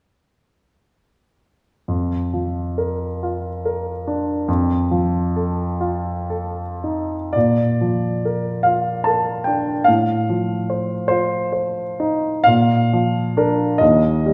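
Heard from further back in a recital hall with a wet 1.4-second reverb, this nostalgic, dreamy romantic nocturne excerpt in Bb major features a polished, present grand piano playing solo from 1.9 s to 14.3 s with free rubato at a slow 36-50 BPM in 6/8, moving through Bb/F and F7 to a closing rootless Cm/Eb.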